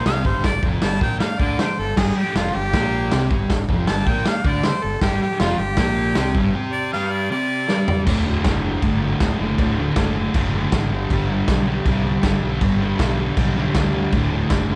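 In a studio room washed with moderate spring reverb, this raw, swaggering garage rock passage at 158 BPM opens with a clear, up-front harmonica with light vibrato, overdrive and tape echo soloing until 8.1 s over a thick, dark, double-tracked fuzz guitar riff, a round, punchy fingered fuzz bass and a gritty, saturated acoustic drum kit with a punchy kick and a pumping small-room sound, whose fill at 7.7 s leads into a new section moving between D and G chords.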